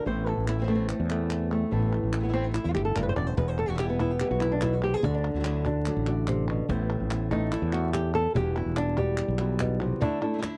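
In a straight 4/4 flamenco groove, crisp palmas hand claps and a growly, bright fretless electric bass set a fiery, dramatic drive under a fingerpicked nylon-string guitar solo played up front with a warm tone, while a second boxy, fresh-stringed flamenco guitar adds background stabs and a woody cajon with faint snares joins at 3.4 seconds, all over Amadd9, Em and Dadd9 chords in a dry, close 1970s-style studio sound dusted with vinyl crackle.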